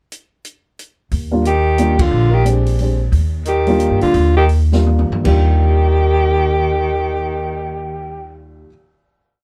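A vibrato-laden alto saxophone carries a roomy bebop-style theme up front in this short, playful small-group jazz piece in Eb major, swinging at 152-180 BPM in 3/4, while a breathy, whispered tenor saxophone shadows it with a soft-attack harmony line mostly in thirds. Drums open alone at 0.1 seconds with sticks keeping time on the hi-hat, a boomy kick and dark cymbals. The woody pizzicato upright bass enters at 1.1 seconds in a two-feel as a mellow grand piano comps syncopated rootless voicings over Ebmaj7 and Bb13; after a band accent, the group slows from 3.1 seconds, and a drum fill leads into a final chord in a warm production with light reverb.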